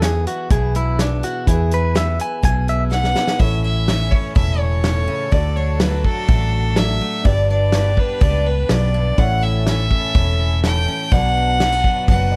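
A dry, close-sounding cut from a longer easygoing, nostalgic honky-tonk and classic country tune at 124 BPM in 4/4, opening with a twangy, direct-recorded clean electric guitar solo with tape echo over punchy fingered electric bass, a natural country drum kit with a fat snare, bright picked steel-string acoustic guitar and a very quiet, woody upright piano. As a drum fill rolls in, a biting, earthy fiddle takes the melody at 2.9 seconds, and a reedy chamber violin section with gut-string tone adds sustained chords in the background from 3.4 seconds. The harmony moves from E through A, D, G and A to Bm.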